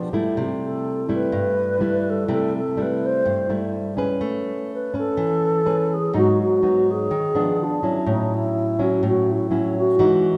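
A straight 4/4 bossa nova groove at 125 BPM sets a relaxed, sunny mood in this short cut from a longer piece, with a dark, thumb-plucked classical nylon-string guitar accompanying from start to finish, its finger squeaks audible up front. Above it, a pure, mellow alto flute with a wooden head carries the melody between D4 and C5, tongued and shaded with vibrato. The pair sit in a wet, church-like hall reverb as the harmony moves from C6 to Amaj9, G#m7 and C#7b9 before settling on F#m7/A at 8.1 seconds.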